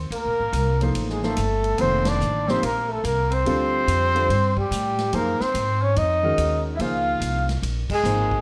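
A dark, whispered trumpet with vibrato carries the melody up front in this spiritual, open modal jazz excerpt, joined by a mellow, breathy tenor saxophone with scooped notes on a second line, over a woody, thumpy pizzicato upright bass, a punchy, natural-sounding big-room drum kit with ride and crash cymbals, and a grand piano entering at 0.8 seconds, with light reverb, full-band accents at 2.0 and 7.8 seconds, and a harmonic shift at 5.1 seconds.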